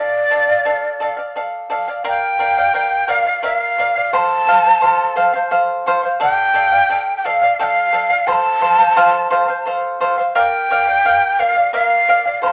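A large wooden quena and a charango sound together from the very start of this Andean folk excerpt, set in 3/4 at 87 BPM with a straight feel. The end-blown quena carries the melody between D5 and C6, its breathy, tongued tone shaded with vibrato and captured close and up front. Beneath it, the fingerpicked charango plays a bright, shimmering accompaniment on its double strings, some of them octave-doubled, also placed up front. The harmony moves from Dm to Bb at 2.1 seconds, then through F, Dm, F and Bb, with a new section beginning at that first change. A wet studio reverb surrounds the pair, giving the music a mood that is at once melancholic and festive.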